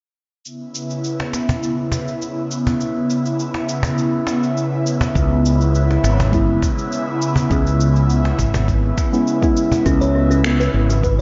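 This organic downtempo piece at 102 BPM in 4/4 is hypnotic and warm, built over a C#m7 chord in C# minor pentatonic. At 0.5 s an airy, breathy pad opens with slow-attack sustained chords, coloured by chorus, phaser, gritty vintage 12-bit sampler texture and sidechain pumping, alongside quiet, layered electronic cabasa and finger snaps. A woody acoustic cajon with faint snares sits low in the mix. At 5.2 s a round, up-front fretless electric bass arrives with a deep electronic kick, and at 6.3 s muted, intimate synth keys with chorus and analog delay add decaying accompaniment. At 9.9 s a plucked, hollow-sounding kalimba joins with ringing arpeggios through a low-pass filter and analog delay, while the whole dreamy mix is soaked in lush hall reverb and rolled off above 7.5 kHz.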